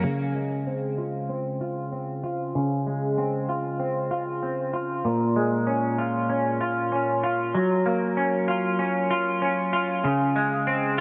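A clean, compressed semi-hollow electric guitar plays alone and up front for the full 11 seconds of this fragment from a longer dream pop piece, its picked, hollow-bodied tone colored by analog chorus, tape echo and a low-pass filter sweep and bathed in a lush hall reverb, drifting through Dbmaj7, Bbm7 and Gbmaj7 chords in a dreamy, floating mood.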